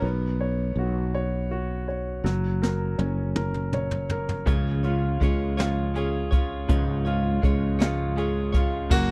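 A gently swaying 6/8 pulse at 54 BPM carries this romantic pop ballad fragment, with a clear grand piano accompanying over Bsus2, F# and C# chords while a growly, punchy fretless electric bass sustains low notes beneath it, thickened by analog chorus. A brush-played jazz kit with a high-tuned snare and boomy kick joins at 2.3 seconds with a fill, and a bright, scooped clean electric guitar, heard briefly at the start, returns at 4.5 seconds with picked arpeggios trailing tape echo. The sound is dry and close, like a 1970s studio session, with the piano, bass and drums placed up front.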